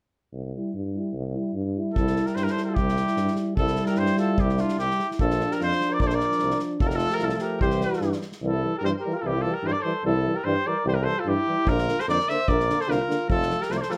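A bright trumpet carries the melody up front with a slapback echo and a distant, roomy character, joined at 2.0 seconds by a dusky, smooth-topped flugelhorn on a second line in this festive, wild Balkan brass band cut from a longer piece. Beneath them, a clean tuba with vibrato and soft attack holds the bass, while two euphoniums with light vibrato fill the accompaniment, one shadowy and smooth-topped, the other punchy and tucked into the background. An acoustic drum kit played with bundle sticks adds punchy kick and medium-tuned snare in a swung 2/4, dropping out at 8.4 seconds and returning at 11.7 seconds, all within a moderate studio ambience.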